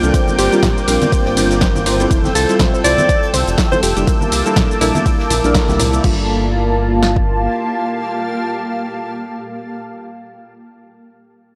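A swung 16th-note feel in 4/4 drives this moody deep house excerpt. It rests on an up-front, overdriven electronic kit with a deep kick and punchy snare, a second overdriven layer of crash, hi-hat, ride, shaker and snare, a very quiet brushed jazz kit, and soft-handed congas in the background. A round, dark analog bass, a mellow chord stab with chorus, phaser and tape echo, and a smooth, detuned analog pad all pump against the sidechain. Behind them hover a blurred, cloudy granular pad and a lo-fi, warbling pluck playing arpeggios through analog delay, while a dark studio violin section holds a single high G with vibrato and portamento. A breathy, close-miked alto saxophone carries a jazz-style melody over chords moving from C9sus4 to Fmaj7 and C13, with a band accent at 5.5 seconds. Most of the percussion drops out around 6 seconds as the harmony settles on Gm9, the kick-and-snare layer stops at 7.3 seconds, and the bass stops at 7.5 seconds, leaving pads and stabs in a dry, gritty hardware sound with light small-room reverb.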